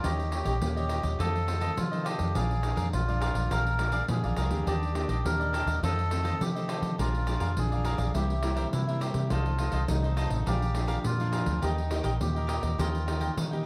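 Samba and choro in Eb major, this nostalgic, yearning passage moves at 104 BPM in a straight 4/4 and is cut from a longer piece, running about 13.7 seconds. A reedy, breathy melodica carries a second line in a narrow middle register, its nasal, plastic-bodied tone framed by a boxy small room. Alongside it, a bright, crisp cavaquinho is picked, while a fingerpicked classical nylon-string guitar sits in the background with a warm glow. The most forward voice is a vintage muted fingered electric bass, round, dark and amped with a foam-muted thud, and a jingly pandeiro played with soft hands sounds distant, as if from a large room. The harmony cycles through seventh chords such as Eb7, F7, Bb7 and C7 before settling on Eb, all within a dark production touched by light reverb.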